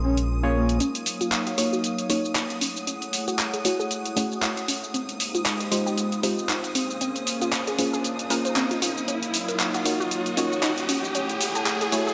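Opening with a breathy, flute-like synth lead and smooth synth bass over a sustained analog pad and shimmering string-machine violins, this hypnotic deep house excerpt in Eb dorian at 116 BPM brings in an up-front, tape-warm drum kit of handclaps, hi-hat and shaker at 0.2 seconds, deep mellow chord stabs trailing dub echo, and from 0.8 seconds a warbling, lo-fi pluck whose arpeggios run through a filter sweep as an electronic riser joins at 2.5 seconds to build over Bbm9, Ebm9, Gbm9 and Fm9 chords in a lush hall reverb.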